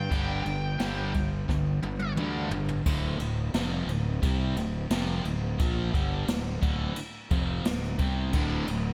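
An up-front jazz brush drum kit drives this menacing hard rock excerpt in D minor at 88 BPM, its boomy kick, medium-tuned snare, toms and dark cymbals set in gated reverb, with a fill from 1.5 to 2.9 seconds leading into the second section. A growly fuzz fingered electric bass sits just as close, overdriven and anchoring the low end. A cranked stack guitar carries the riff throughout, bright and overdriven with a lush chorus, while a distorted electric guitar plays its own riff in the background, dropping out at 2.8 seconds and returning near the close. A dark, bluesy lead guitar with distortion and digital delay plays a melody over the opening seconds before falling away. The harmony moves from a G5 chord to D minor, framed by light studio reverb and a bright 1980s-style digital production.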